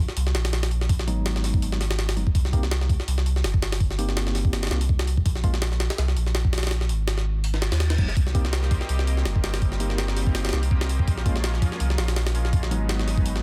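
A saturated sub bass opens this frenetic, atmospheric slice of drum and bass and jungle, deep and thick with a fast attack, sitting up front alongside a gritty, sampler-style drum kit whose thumpy kick, high-tuned snare and hi-hat sound pitched up, compressed and tape-warm. The groove carries a light swing on the sixteenths, driving the whole passage with a restless energy. A clean tine electric piano drifts in with stabs through a combo amp, shimmering with medium tremolo and trailing dub echo over minor seventh chords, then drops out before returning. At 7.6 seconds an electronic reverse cymbal rises into 8.2 seconds, where a lush unison pad enters with sustained chords, its detuned sawtooth tone warbling and bright under chorus, with a slow attack and long release. The mix sits in a digital ambience and is dense and heavily limited in a modern master, the piano and pad held back behind the bass and drums.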